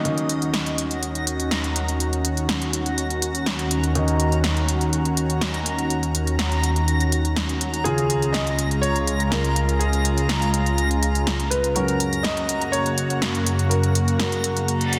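A dense, heavily limited mix sits in a moderate hall reverb with small-room ambience and a faint mains hum, framing a bittersweet, dreamy progressive house piece in Eb minor at 123 BPM, moving from Ebm7 through Db to Gb. Up front, a thick, detuned sawtooth unison pad holds slow-attack chords with chorus, alongside a punchy deep house kit of snare and smooth hi-hats. Soft stabs from a felt-muted upright piano with audible action noise and dub echo sit in the background. They are joined by a reversed, granular triangle texture on a high Bb, a brilliant baby grand melody with echo from 7.8 s, and a reverse cymbal at 14.8 s.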